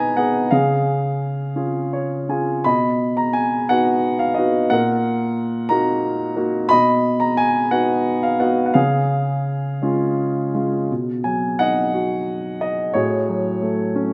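A dark, mellow baby grand piano plays alone up front in this tender, peaceful classical excerpt, moving with lyrical rubato in a slow 6/8 around 55-62 BPM in B lydian, its long sustain blooming into a moderate recital hall reverb, with a brief fill at 1.6 seconds and a shift to a new section at 10.9 seconds over chords such as G#m/B, C# and F#madd9/A.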